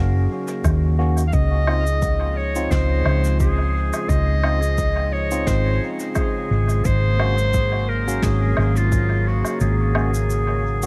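A hazy, peaceful ambient dub excerpt at 87 BPM in Ab mixolydian, set in an intimate studio space with a round, dark hollow-body bass up front and a smooth, warbling analog pad sustaining chords under clean tine electric piano stabs that trail off in dub echo. Brushed cabasa, woodblock and fat snare arrive at 0.5 seconds with echo of their own, joined by a deep, tape-toned electronic kick that drops out at 9.6 seconds. A bright, classical-style solo clarinet carries the melody from 1.3 seconds, its lines repeating in dub echo as the harmony moves from Ab9sus4 to Dbmaj9 and back.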